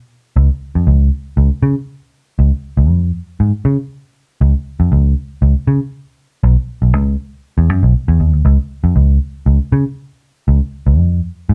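Funk at 119 BPM in Db mixolydian, this gritty, energetic excerpt features a vintage muted picked electric bass playing alone from 0.4 to 11.5 seconds, ranging from Cb2 to Db3. The amped bass tone is dark, round and punchy, its foam-muted notes sitting up front in the mix under light reverb. A new section begins at 8.4 seconds and carries through to the end.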